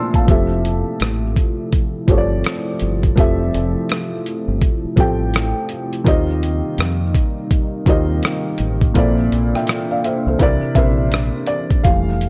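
A felt-muted upright piano, soft and intimate with audible action noise and a cassette-tape haze, opens this dreamy, cosy lo-fi hip hop excerpt over a moody, detuned analog pad glowing in the background, before a gritty, compressed sampler-style drum kit with a thumpy kick, hi-hat and rim click and a round, punchy fingered electric bass join in a swung groove that drifts from Fmaj7 through Eb6 and Bbmaj9#11 to C9.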